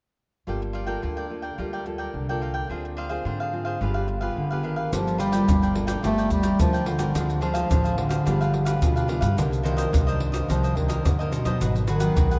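Yearning and nostalgic, this excerpt of samba and choro opens with a crisp, mellow picked cavaquinho, a full-bodied fingerpicked nylon-string guitar and a woody pizzicato upright bass moving through Gm9, Dm7b5 and G7b9 chords. At 4.4 s a warm bass clarinet takes up the solo melody in a classical style, and at 4.9 s an up-front egg shaker, tight surdo and pandeiro played with hard hands join in, with the harmony later moving on to Cm9 and Abm7. The whole sits in a vast, echoing cathedral reverb.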